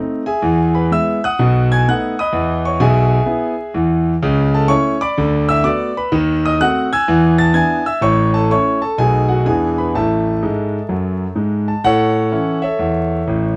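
Swinging and playful, this is a short stretch of stride-piano jazz in 4/4, cut from a longer piece, with a lilting swung eighth-note feel. A single concert grand carries everything as a solo from 0.0 to 13.6 seconds, ranging from A1 up to A6. Its tone is clear and smooth with a deep bass, a vintage character and long sustain, and it sits up front. The harmony moves through chords such as B7, D6, D#dim7 and E7, and the piano plays a fill from 10.4 seconds before a new section begins at 11.8 seconds. Close, detailed microphones, light reverb and a layer of vinyl crackle give the recording an intimate, old-record quality.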